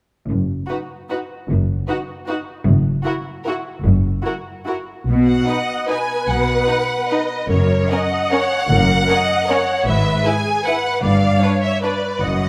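A rich, focused violin section carries the melody up front with vibrato, over a clearer, more distant second violin line and warm violas that slide with expressive portamento. Beneath them, dark double basses and smooth, even cellos hold the bass from 0.3 s, giving this elegant, sweeping orchestral ballroom waltz in B major a lush foundation as it moves with rubato between 138 and 165 BPM. Heard in a moderately reverberant scoring stage, the string ensemble passes from its opening section into a second at 5.1 s, closing on a G7 chord in this fragment cut from a longer piece.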